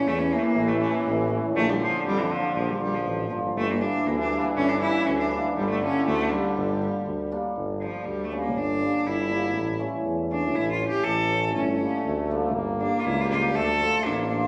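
This festive, soulful klezmer excerpt opens with a bowed cello carrying the melody, joined at once by trombone, cimbalom and tuba in a straight 2/4 at 120 BPM in G dorian sharp4. The single cello sits up front with a biting, intense tone and light vibrato, while the trombone adds a punchy, forceful second line in a jazz style, with vibrato and scooped notes. Beneath them the hammered cimbalom supplies a shimmering, ringing accompaniment, and the tuba anchors the bass with a clear, classical-style sound. The trombone drops out at 7.3 seconds, and from 7.6 seconds the cello takes a solo, with the trombone returning at 11.5 seconds. The band plays live together in one large studio, bathed in a lush reverb that lends the ensemble a spacious glow.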